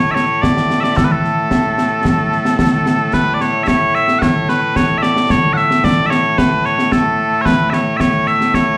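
This sounds like a live gig heard through the venue's PA, with a moderate club reverb giving the room a short, close tail. The piece is Scottish traditional pipe music at 111 BPM in 4/4 with a straight feel, in A major, and it carries a ceremonial, proud mood. Mellow small bagpipes lead the melody from the very start, sitting up front with a sweet, continuous tone, vibrato and a slapback echo, ranging from A2 up to F#5. A concert snare drum and concert bass drum come in at 0.2 seconds, sounding acoustic and somewhat boxed in, as if in a small room, with dark cymbals and their own slapback echo. The excerpt shifts into a new section at 3.1 seconds, with the pipes carrying on until the cut at 8.8 seconds.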